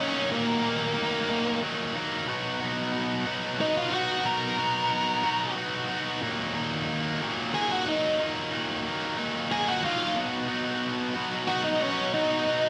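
A dark, fuzz-soaked octave lead guitar carries the melody with a slapback echo from the first moment, set over a bright, tightly picked, double-tracked distorted guitar riff, both sitting up front. This brooding, cathartic rock passage in a straight 6/8 moves from Ebm to Bmaj7 and back, landing on B near 10.2 seconds. A light reverb frames this short 12.7-second cut from a longer piece.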